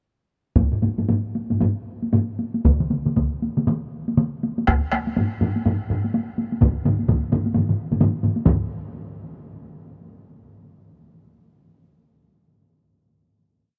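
A close, compressed sound with light reverb frames this short, complete piece of Japanese traditional taiko drumming, driving and ceremonial in mood. In 4/4 with a swung sixteenth-note feel, the tempo speeds up from 114 toward 143 BPM across the whole performance. A solo taiko part played with heavy sticks carries a repeating pattern, its tone saturated and up front, while a hard-stick ensemble part, also compressed and saturated, adds taiko phrases from 0.6 seconds. A further heavy-stick ensemble part, heard in a small room, contributes phrases of its own, and a fourth ensemble part with heavy sticks joins at 2.6 seconds on a repeating pattern. After the single section of accelerating drumming, the piece closes on a final hit at 8.5 seconds.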